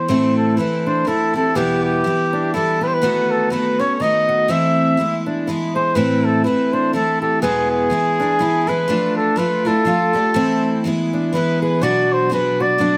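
Moderate studio reverb frames this melancholic, reflective acoustic folk piece in A minor, moving at 123 BPM in a swung 3/4. Up front, a warm flugelhorn carries the melody with light vibrato and a roomy, classical quality, over a bright, shimmering twelve-string guitar picking full-bodied, octave-doubled accompaniment and a concert steel-string guitar adding picked arpeggios. At 11.8 seconds, as the harmony moves to Bm, a soft, flute-like tonewheel organ enters with sustained chords through chorus vibrato and a slow rotary speaker, in this excerpt cut from a longer piece.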